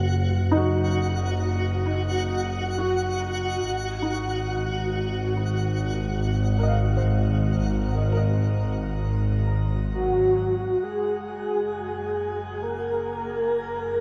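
Ambient music at a slow 67 BPM in Ab mixolydian, this excerpt from a longer piece feels weightless and serene, moving from Ebmadd9/Gb to Ab and then Gb at 10.8 seconds. A soft, felt-muted upright piano plays intimate arpeggios through tape echo until 10.9 seconds, fading out alongside a twinkling, sparkling granular texture with its own built-in reverb, while a bowed double bass section sits up front with a dark, reedy gut-string tone and light vibrato. At 9.9 seconds a breathy, flute-like synth lead enters with the melody, given ensemble chorus and vibrato, all set in a moderate shimmer reverb within a dark, warm production.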